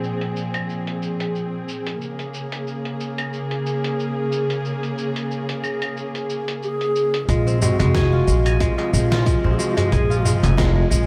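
An up-front, dark chamber string section holds soft-attack, sul tasto chords with light vibrato and a sidechain pump from the start of this meditative, earthy organic downtempo excerpt at 91 BPM, moving from Fm/Bb to Bbm7 over a gritty, tape-toned sampler-style kit of claves, hi-hat, shaker and a fat, filtered snare. A hollow, airy bass bansuri enters with a tongued melody at 6.6 seconds, trailed by delay and slapback echo, and at 7.3 seconds a bright, ringing kora adds fingerpicked arpeggios while a woody, thumpy pizzicato upright bass and an overdriven electronic kick arrive. A crisp metal-shell darbuka sits distant in the background, and a lush hall reverb gives the piece a big arena sound.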